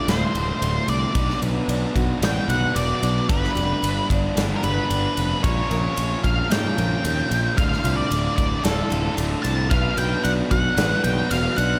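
Quiet-loud alternative rock with a dark, brooding mood, this excerpt moves at 112 BPM in a straight 4/4, cut from a longer piece and tuned slightly low to A4 = 438 Hz. An octave-fuzz lead guitar carries the melody up front as a solo across the whole 11.8 seconds, its dark, distorted tone ringing between A4 and A5 through slapback echo and analog delay. Beneath it, a double-tracked fuzz guitar drives a bright, distorted riff with slapback echo, while a boxy parlour steel-string acoustic guitar picks arpeggios in the background, carrying the same echo and analog delay. A fingered electric bass adds growly, overdriven punch in the low register, and a big rock drum kit lays down a punchy kick, medium-tuned snare and bright ride cymbal, both entering at 0.1 seconds. The harmony shifts through Dm, Bm, G and Bbm before returning to Dm and Bm, and a moderate concert hall reverb gives the mix a big arena sound.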